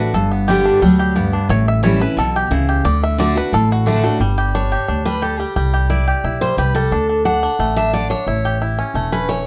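A twangy, fingerpicked banjo leads this joyful, virtuosic bluegrass excerpt in D major at a brisk 177 BPM, backed by a full-bodied picked dreadnought guitar and a woody, thumpy pizzicato upright bass on gut strings. At 4.2 seconds the guitar takes its own solo, its fresh strings sounding bright with audible finger squeak, while the banjo and bass keep playing. All three acoustic instruments sit up front in a dark production with moderate studio reverb.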